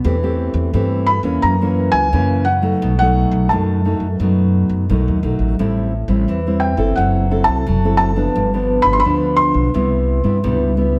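A felt-muted upright piano carries the melody from 1.1 s, its soft, intimate tone high in the register with short sustain and the faint clatter of its action audible up close. Underneath, a full-bodied, thumb-plucked classical nylon-string guitar and a woody, growly pizzicato upright bass on steel strings drive a lively yet nostalgic samba-choro groove at 87 BPM in straight 4/4, tuned slightly sharp to A4 = 443 Hz. The harmony moves from C6 over E through dominant chords, then Am7, F#m7b5 and G7 to settle on Cmaj7, all bathed in a wet, large studio reverb in this short passage cut from a longer piece.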